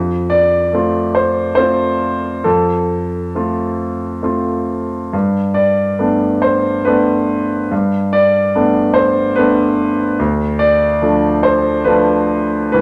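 Bathed in a wet studio reverb, this brief cut from a longer neoclassical minimalist piano piece features a solo concert grand, clear and natural with a deep bass and placed up front, drifting in a rubato three-four through F, Gadd9 and D minor chords with a hopeful, peaceful mood.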